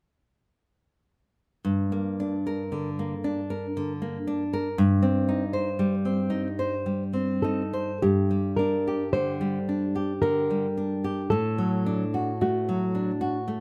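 A bright, fingerpicked nylon-string guitar sits up front with the melody, entering at 7.4 seconds and staying in a high register as the passage moves into its second section at 8.0 seconds. Beneath it, a second nylon-string guitar plays the accompaniment from 1.6 seconds, thumb-plucked and warm, reaching from its low bass strings into the middle range. This romantic classical duo has a solemn, elegiac mood, unfolding in a slow three-beat metre with uneven beats and free, rubato timing. The accompaniment carries the opening section alone before the melody joins, and both guitars sound in a light reverb that gives them a soft, intimate space. The recording is a short cut from a longer piece.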